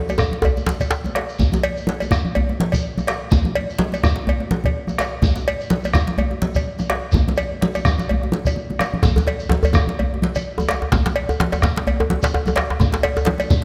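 A tight, cracking djembe sits up front in this earthy, powerful West African traditional drum ensemble, sounding from 0.2 to 1.0 seconds and returning at 9.0 seconds just after a drum fill. Beneath it, a round, vintage bombo, a deep second djembe struck with hard hands, thick-skinned congas played with soft hands, a dry metallic cowbell and a distant, grainy shekere carry a swung sixteenth-note feel that speeds up throughout. The recording sits in a moderate scoring-stage reverb, and the clip is cut from a longer piece.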